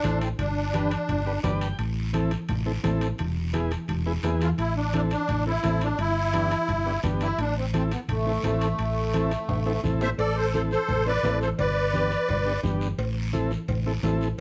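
Cumbia at 171 BPM in A minor, driving and fiery, cut from a longer piece, with a shimmering, close-miked musette accordion up front carrying the melody, pausing after 1.4 seconds while a vintage combo organ with heavy vibrato fills in, then returning until 12.6 seconds. A dark, round hollow-body electric bass sits up front beneath the organ's clean accompaniment, a raspy guiro joins in, and low-tuned congas and ringing, saturated timbales and cowbell stay in the background, the drums adding a fill at 9.5 seconds. Chords cycle through G, Am and E in a moderate studio reverb.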